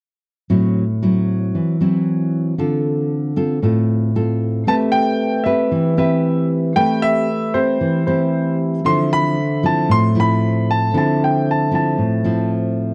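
A polished, present grand piano carries the melody in this smooth, intimate bossa nova excerpt, entering at 4.7 seconds with long-sustaining notes in its upper register. Beneath it, a dark, fingerpicked nylon-string guitar opens alone at 0.5 seconds. Its classical acoustic tone sits up front, close enough that finger squeak can be heard. A vibraphone struck with medium hard mallets and played with the motor off joins at 4.6 seconds, adding metallic, ringing color with a boxy small-room character, set quieter in the mix. The piece moves at 115 BPM in a straight 4/4 in A minor, with the harmony passing through Am6 and Dm7 before turning to Am9 as the second section begins and then to Dm9. The sound is dry and close in a 1970s studio style, touched by light reverb and small room ambience.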